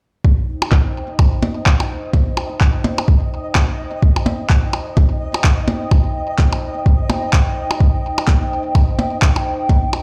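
Hypnotic and cool, this minimal techno excerpt in C minor moves at 127 BPM with a swung sixteenth feel, as a soft, tape-warm electronic kick drum sits up front from 0.2 seconds, joined by a warbling, nostalgic lo-fi pad with chorus and sidechain pumping, percussion blips trailing tape echo, analog electronic handclaps with a low-pass filtered snare, and a grainy, flickering granular texture in the background, all played into a bare room on a big sound system with large studio reverb.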